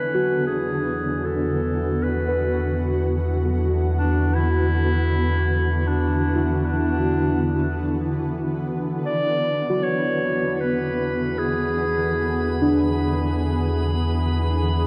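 In free time and E mixolydian, this serene, peaceful ambient piece floats over a single Bm/E harmony, cut from a longer work. A vintage-toned clarinet sings a solo melody in classical style up front until 12.9 seconds, with delay trailing its phrases. Beneath it, a shimmering, ethereal pad holds sustained chords with an octave-up shimmer, granular grain and chorus, while a filter sweep moves through it during the opening 9.0 seconds. A round, deep analog bass anchors the low end on a single note, and muted, intimate synth keys ripple through soft arpeggios coloured by chorus and delay. From 10.5 seconds a glassy texture of drifting overtones fades in quietly, and the whole mix sits in a dark, cathedral-like reverb with a long, wet tail.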